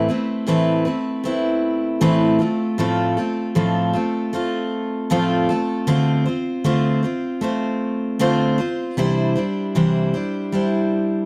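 Wistful and tender, this short pop excerpt moves at an unhurried 78 BPM in 4/4, with a gentle swing on the sixteenth notes. A lone picked steel-string acoustic guitar carries the whole piece, its jumbo body giving a bright, full-bodied tone that sits up front in the mix. Finger squeaks along the strings add an intimate, human touch, and the guitar ranges from A2 up to C5. The harmony drifts from Amadd9 to F/A, then settles on Dm7 before reaching Cadd9 near 9.0 seconds, lending a gently unresolved, yearning quality. The dry, close sound recalls a 1970s studio, with only a touch of studio reverb around the guitar.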